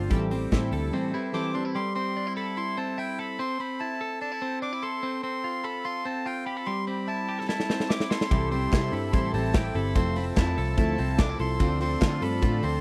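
Bright and nostalgic, this dry, close 1970s-style jangly indie pop excerpt rings with a twangy, compressed twelve-string electric guitar playing slapback-echoed arpeggios throughout, joined at 1.3 seconds by a reedy, breathy melodica melody. The punchy big rock drum kit with bright cymbals, a round, foam-muted vintage bass, fingerpicked dreadnought acoustic guitar and glossy chorused retro synth keys are heard briefly at the opening. After a drum fill at 7.5 seconds, they return from 8.3 seconds alongside sustained pipe-organ cornet chords with chiff and tremulant, with very quiet, distant group handclaps joining at 8.7 seconds to fill out the sound.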